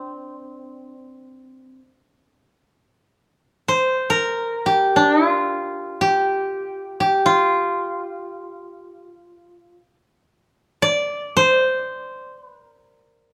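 A solo koto, plucked with fingerpicks, carries this austere, calm fragment of Japanese traditional chamber music, sounding woody and dry as it sits up front from 0.0 to 13.3 seconds. It moves in free time within a C suspended pentatonic mode, ranging from C4 to D5 and tuned slightly low to A4 = 437 Hz. Close, detailed miking and a light reverb frame the instrument in an intimate space.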